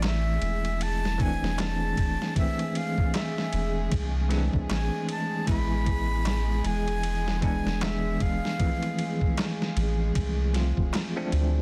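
Trip hop at 77 BPM in A harmonic minor, smoky and cinematic, this excerpt moves from Am to E to Dm7 over a swung 16th-note feel. A breathy, close-miked concert flute carries the melody through tape echo until 9.8 s, over a bell-like tine electric piano with tremolo, dark bowed strings played sul tasto with 12-bit sampler grit, and a round, deep dub sub bass sitting up front. A dusty, compressed sampler-style kit with a thumpy kick, snare and ride drives the groove in studio reverb, while a crisp metal-shell darbuka sits in the background, all within a dense, heavily limited master dusted with vinyl crackle.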